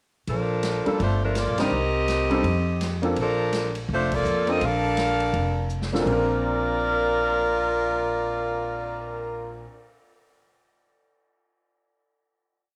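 Swinging and energetic, this short big band swing piece moves at 166 BPM in 4/4 with a swung eighth-note feel in Bb major. An up-front, close-miked saxophone section carries a motif-based melody of call phrases, harmonised in four-part block voicing, over a woody, thumpy upright bass playing pizzicato in a two-feel. A clear upright piano with long sustain joins at 0.9 seconds, comping in syncopation with rootless voicings through a turn from Bbmaj7 to Gm9, Cm7 and F13. The drum kit sits distant and roomy, with a boomy kick, a medium-tuned snare on the backbeat and a ride cymbal pattern, plus crash, hi-hat and a cymbal swell. The band hits accents at 1.5 and 4.1 seconds, and a drum fill leads into a final Bb chord at 6.1 seconds. A moderate echo chamber reverb gives the ensemble a studio sheen.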